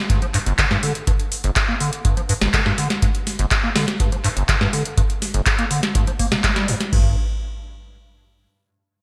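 Acid house at 123 BPM in 4/4 with a straight feel, this raw, gritty excerpt sits in G minor over a G5 power chord and is cut from a longer piece. A squelchy, resonant square-wave acid bass carries the riff from 0.1 to 7.2 seconds, ranging from G1 to Bb3, its sound shaped by a filter sweep along with tube saturation, ensemble chorus, sidechain pumping and delay. A booming analog drum machine supplies a dry, deep kick and crash cymbal with a tape-like glow, while a second drum machine part places crisp snare, handclaps and metallic hats up front, treated with gated reverb and a short room. Near the end, at 6.9 seconds, a thick, saturated sine sub bass enters very quietly on G1 as the chord drops away. Light reverb and a bright 1980s-style digital production frame the whole track.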